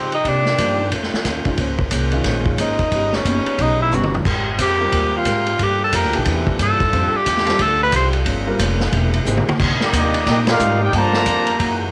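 A clear tenor saxophone with vibrato leads this sultry, brassy slice of big band swing, soloing up front for the first 8.1 seconds. A boxy, picked archtop guitar with audible finger squeak sits in the background, while a warm trombone section holds sustained chords behind it and a woody pizzicato upright bass carries the low end. A vintage drum kit with dark cymbals, a tight kick and a gritty, saturated edge adds fills around 3.9 and 9.3 seconds, and a polished grand piano accompanies from 0.6 to 9.5 seconds. At 9.8 seconds a mellow, roomy trumpet section takes over the melody with light vibrato, joined by a bright trombone section on a second line, and the band hits an accent at 10.4 seconds. The brass, reeds, guitar, piano and drums carry a cassette-tape texture, and the whole is heard in a light studio ambience with a touch of reverb, as a short cut from a longer piece.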